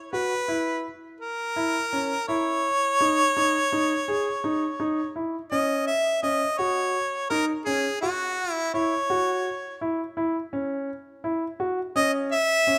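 A clear, up-front solo harmonica with light vibrato carries a pop-style melody over intimate grand piano arpeggios with audible key action in this urgent yet pensive contemporary instrumental in 9/8 at 167 BPM in C# dorian, moving from F#7 through C#madd9 and D#m7/C# to C#m under a touch of reverb before this fragment of a longer piece ends at 12.8 seconds.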